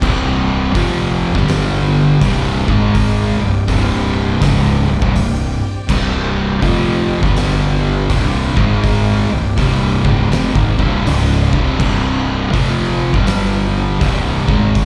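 Brooding and hypnotic, this 14.8-second cut from a longer stoner and doom metal piece crawls at 81 BPM in C minor with a swung feel. A growly, bright fuzz bass and an up-front, oversized low-tuned drum kit with a boomy kick, fat snare and dark cymbals in a pumping stone room anchor the sound. Behind them, a double-tracked crunchy overdriven guitar and two thick fuzz guitars, one dark and one very quiet, grind out a riff over C5, G5 and Ab5 power chords. A very quiet percussive tonewheel organ with chorus vibrato and a stopped rotary speaker holds sustained chords, all heard through a club PA.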